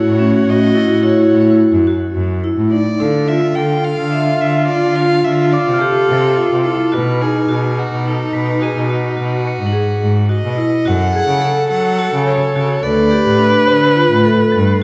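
Contemporary chamber music in a restless, hypnotic 7/8, where a floating sul tasto violin carries the melody over a clear, intense viola line, ringing hard-mallet vibraphone arpeggios with motor vibrato and a biting, nasal cello bass up front, while soft bell-like crotales shimmer in the background from the start, drop out at 1.5 seconds and return at 5.5 seconds, all set in a recital hall reverb.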